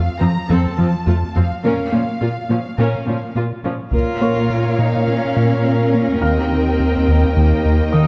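Opening on a vibrato-laden symphonic violin melody over a glossy, chorused retro synth bass riff and a soft, felt-muted upright piano murmuring in the background, this vast, relentless hybrid orchestral and electronic film-score cut at 105 BPM in Bb minor soon adds a clear studio viola section and a distant cello section on the bass line, then at 3.9 s shifts to Bb dorian as a focused solo cello takes the melody, a lush violin section adds a second line and a heavy-stick taiko ensemble strikes until 5.0 s, set within a wet scoring-stage reverb.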